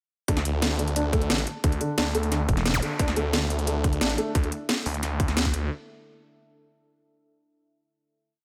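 This short, futuristic and aggressive dark technical drum and bass piece opens straight into a drop at 0.3 s at 177 BPM in 4/4, with a tight overdriven electronic kick, cracking snare and bright hats driving up front beneath a snarling, detuned saw bass that pumps with the sidechain through chopped, saturated phrases. A soft felt-muted upright piano loops a mellow 6-step arpeggio that drifts against the bar through dub echo, while a thick growling FM bass cuts in briefly at 2.5 s alongside a faint electronic zap. From 3.5 s a deep, moody ambient pad adds chorused, reverberant sustained chords in the background, all in a lightly reverberant digital space tuned slightly sharp at A4 = 441 Hz.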